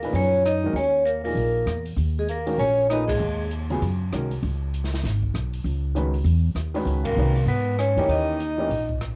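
A swung 4/4 groove carries this cool, spiritual modal jazz excerpt, with a woody, up-front pizzicato upright bass and an open kit of dark cymbals, rim click and a boomy kick under a short-sustain baby grand piano comping through Ebm11, Dbm11 and Eb7b9. A ringing, bright vibraphone with slow motor vibrato states the melody over a breathy, subtoned tenor saxophone second line full of scooped notes. The band hits accents at 3.1 and 7.0 seconds. The horn and vibes rest from 3.5 seconds until the saxophone returns at 7.0 and the vibraphone at 7.1. It is all heard as a home cassette recording with light reverb overall and plate reverb on the vibraphone, saxophone and piano.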